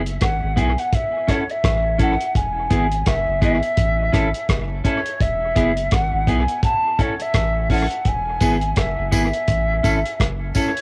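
Roots reggae with a warm, sunny mood, this excerpt from a longer piece rocks between E and A chords over a swung sixteenth-note feel. A soft, round dub sub bass sits deep and up front, its fast attack giving way to sustained tones. A cloth-damped acoustic drum kit thuds along with a tight kick, hi-hat and rim click, its saturated, gritty sound rolled off at the top and run through cassette tape. Carrying the melody is a mellow, hollow silver concert flute with a crisp attack and gentle vibrato, set at a distance in dub echo and plate reverb yet still prominent. A clean, picked electric guitar accompanies from 0.6 seconds, bathed in lush chorus, dub echo, plate reverb and cassette coloring, and a close, dry tambourine joins quietly at 8.4 seconds, all within the intimate small-room character of a home cassette recording.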